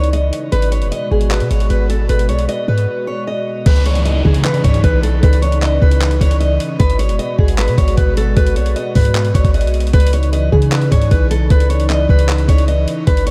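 Brooding and eerie, this trap-inflected hip hop excerpt moves at 153 BPM in a half-time feel in C# minor. A dark, fingerpicked steel-string acoustic guitar carries the melody through delay over a smooth, detuned sawtooth pad with chorus and slow-blooming sustained chords, while a deep, boomy sine 808 bass sits underneath. A gritty, pitched-down sampler-style drum kit with a thumpy, up-front kick, handclaps, hi-hat and crash cymbal drives the groove, with a break arriving from 2.9 to 3.7 seconds, as a very quiet electronic downlifter and light reverb add shadowy depth.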